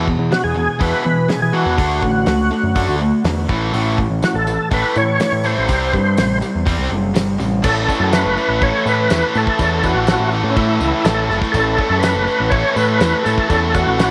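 Sunny and driving, this classic rock excerpt moves at 123 BPM in a straight 4/4 feel in A major, with a brief span of chords that run from E5 through D, A and C5 before landing back on A. Two electric guitars share the riff from the start: one overdriven and bright, the other a tight, distorted part sitting in the background. They are anchored by a growling, overdriven picked bass placed up front, and a damped 70s drum kit with a fat snare, tight kick and rolled-off top. From 0.3 seconds, a gritty tonewheel organ carries the melody up front, its key click and percussive attack colored by a slow rotary speaker, chorus vibrato and tape echo. A jingly, band-limited tambourine joins quietly at 3.7 seconds, and a woody, boxy upright piano with long sustain slips into the background at 7.6 seconds as the second section begins. A moderate spring reverb gives the whole band a shared, vintage sense of space.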